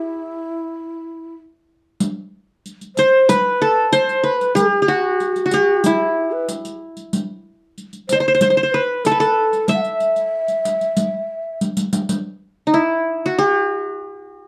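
An Arabic maqam ensemble piece in E maqam suznak at 94 BPM in 4/4, festive and passionate, cut from a longer performance. The fingerpicked qanun carries the melody up front with a bright-edged, triple-string ring and plate reverb, while a breathy, mellow end-blown ney adds a tongued second line with rolled-off highs until 11.6 seconds. A riq with compressed, saturated jingles under soft hands enters at 2.0 seconds and plays a fill ending at 12.2 seconds, after which the qanun closes alone in a dark, moderately reverberant studio sound.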